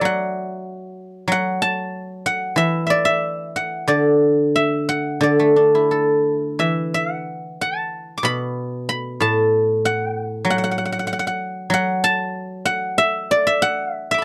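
A dry, close 1970s-style studio sound with light reverb frames this flowing, serene passage of Chinese traditional solo plucked-string music in D gong mode, where a single acoustic guzheng, played with fingerpicks and placed up front, rings out in silvery tones across a range from A2 to D6 at a rubato pace hovering around 88-98 BPM in 4/4 for 14.2 seconds cut from a longer piece.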